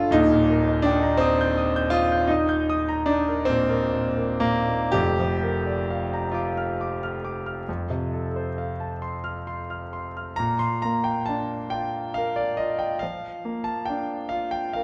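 Serene and tender, this romantic nocturne for solo piano unfolds in 12/8 with free, rubato phrasing, cut from a longer piece. The concert grand sits up front, clear and intimate, its deep bass and long sustain blooming into a wet recital hall reverb, with the noise of the action audible beneath a dark, polished sound. Harmonies drift from Eb toward Bb/F and F before the music settles on Bb as a new section begins at 10.4 seconds.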